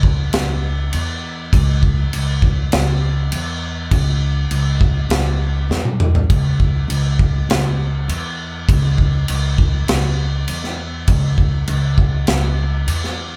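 Stoner and doom metal with an ominous, hypnotic mood, taken from a longer piece and played live by a band in one room with light reverb. A pizzicato upright bass sits up front with a woody, warm, steel-string tone colored by tube saturation, holding to its low register. A big acoustic rock kit, also up front, drives it with a punchy kick, a high-tuned snare, toms and crash cymbal, and a brief drum fill breaks in at 5.7 seconds.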